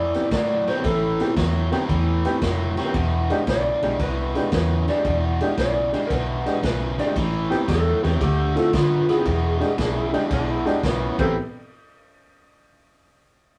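Mournful and smoky, this electric blues shuffle swings at 114 BPM in 4/4, with a dark, slightly broken-up slide guitar carrying the melody over a biting overdriven guitar riff, a round, foam-muted fingered bass and a woody, slightly detuned upright piano. A vintage acoustic kit with a tight kick and rolled-off top keeps time on kick, snare, ride and crash as the harmony moves through Am7, E7#9 and Dm7, and a distant tenor saxophone with scooped subtone notes slips in at 9.8 s. The rough rehearsal-room recording carries warm saturation and moderate studio reverb, and this fragment is cut from a longer piece.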